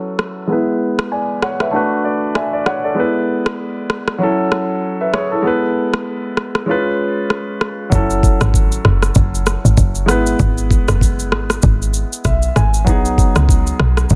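A dry, dense and heavily limited mix opens this breezy, joyful afrobeats excerpt at 97 BPM in 4/4, with a swung sixteenth feel, moving from E mixolydian to E major at 7.9 s. A warm, polished grand piano carries the chords from the start under a low-pass filter sweep through the first section and adds short fills around 1.7 s and 11.9 s, while a produced electronic afro-pop kit with a knocking kick, rim click and shaker sits up front, its snare softly clipped. At 7.9 s a woody, punchy FM log drum bass enters, its fast-attack, decaying notes carrying a noise layer, as the harmony passes through F#m7 and E before landing on B6.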